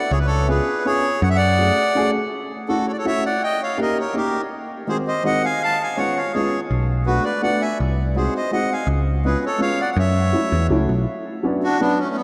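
Set in a vast, echoing cathedral space, this whirling, nostalgic musette waltz in F# minor turns at 164 BPM in 3/4, with a reedy, clear single-reed accordion carrying the melody up front over a woody, slightly detuned upright piano whose action noise is audible, while a round, direct picked electric bass plays in two stretches, from 0.1 s and again from 6.7 s, in this brief cut from a longer piece.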